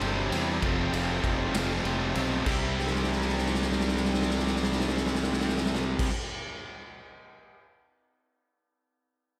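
Quiet-loud alternative rock in 6/8, this short cut from a longer piece feels bittersweet and anthemic as three guitars (a fuzz-drenched bright one, an overdriven hollow-body one and a tight, double-tracked distorted one) churn a picked riff in the background over a round, fuzzed fingered bass. A raw garage drum kit sits up front with a punchy kick, gritty saturation and a pumping stone-room sound, playing a long fill from 2.8 seconds as the harmony moves from Csus2 and F to C. The guitars and bass stop at 6.1 seconds, leaving the drums alone until 7.6 seconds under light reverb.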